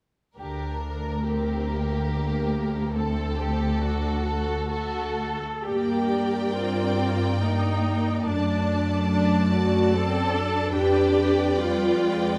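Heard in a moderate scoring-stage reverb, this brief cut from a longer piece for string orchestra sounds lush and elegiac, moving with a solemn, rubato lilt in 3/4. One violin section carries the melody with smooth vibrato while a second violin section sings a supporting second line, the violas fill in the accompaniment, and the cellos join the clear, up-front double basses on the bass with an expressive, soft-attack warmth. All five sections play from 0.4 to 12.4 seconds, with the harmony turning from Gm/D toward D7 and later settling on G7/F.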